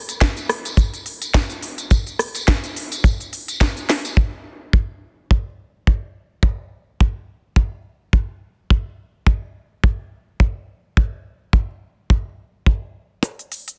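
A dense, heavily limited modern master with studio reverb frames this groovy, sleek nu-disco excerpt in 4/4 with a swung sixteenth feel, where a dry, tight acoustic kick drum sits up front from 0.2 to 13.4 seconds under a layered electronic house kit of cracking snare, crisp filtered hats, rim click and shaker alongside a vintage, band-limited tambourine, both dropping away after a drum fill at 3.9 seconds before the kit returns briefly at 13.2 seconds.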